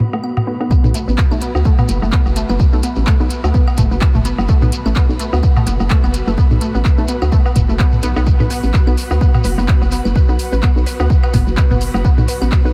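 Hypnotic, clinical minimal techno cut from a longer piece at 127 BPM with swung 16ths opens on a hollow, bouncy FM bass pumping under sidechain, tape-warm electronic toms, woodblock and claves, a faint flickering grainy texture and a cloudy, blurred granular pad with chorus and reverb sitting in the background, while a juicy, squelchy resonant blip pluck riff with chorus and delay arrives at 0.1 seconds, and the drop at 0.7 seconds brings in an up-front, punchy analog kick and a mellow, close shekere, followed at 0.9 seconds by a layered kit of handclaps and smooth hi-hats beneath a light digital ambience.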